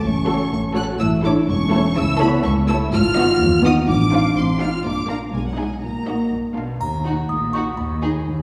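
Quirky and sneaky, this playful, whimsical cinematic film cue in Eb minor moves at 124 BPM in a straight 2/4, cut from a longer piece, with a lush violin section carrying the expressive vibrato melody over a smooth second violin line, a dark sul tasto viola accompaniment, horn chords held until 6.3 seconds, and a bowed cello and double bass foundation with cello portamento, before a delicate, tinkling, slightly out-of-tune music box joins the violins on the melody at 6.8 seconds alongside a faint triangle, all set back in a reverberant scoring-stage space.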